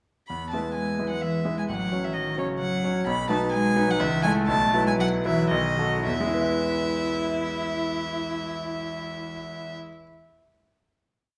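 A rich, pure violin carries the melody of this short, complete classical-period movement for piano trio. Bowed sul tasto with a soft attack, it sounds floating and slightly distant while still sitting up front. A single cello doubles the tune an octave lower, its tone intimate and close, with light vibrato and an airy bow. A brilliant, polished concert grand supplies syncopated chords in a lively, spirited triple metre with a straight feel, adding deep bass and long sustain. The pace slows from 2.4 seconds to 6.1 seconds, where the trio settles onto a final chord that rings out in a wet recital hall.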